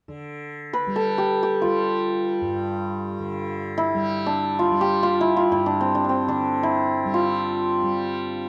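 A softly plucked, buzzing tanpura drone on G opens this serene, meditative excerpt of Indian classical music in free time, set in raga Khamaj. At 0.7 seconds a hammered santur enters up front with a mellow, ringing, shimmering melody in the middle register, while the warm tanpura sits lower in the mix. Close, detailed microphones and light reverb keep the sound intimate and clear.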